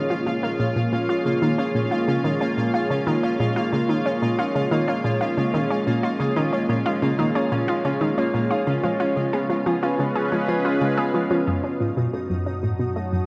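Ambient, sequencer-driven space music with a cosmic, mysterious air, in which an up-front, nasal analog pluck riff with chorus and analog delay sits over an evolving, full-bodied pad of sustained chords, a ringing fingerpicked Celtic harp arpeggiating through delay and a bright, pulsing gated texture drenched in its own reverb, before a background analog drone enters at 12.2 seconds as the chords move from Bbm7 through Db7 to F#m, all wrapped in a lush hall and worn, warbling cassette tape.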